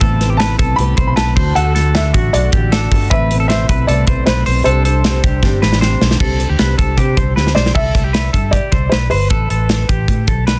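A dark, slightly detuned upright piano with woody action noise carries the delay-touched melody from 0.4 seconds in this nostalgic, youthful jangly indie pop excerpt, over clean picked electric guitar arpeggios with delay, a fingerpicked dreadnought acoustic guitar that stops at 7.8 seconds, very quiet, thick pipe organ chords that end at 6.2 seconds, a round, foam-muted bass, and an up-front drum kit with a punchy kick, bright cymbals and short fills, in a small, airy room with a dense, heavily limited master.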